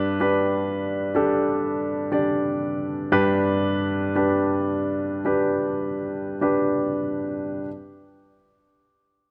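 A dark, polished sound bathed in a moderate plate reverb frames this heartfelt, emotional pop fragment, where a warm grand piano sits up front in a present accompaniment role throughout its 7.7 seconds, slowing down gradually from start to finish.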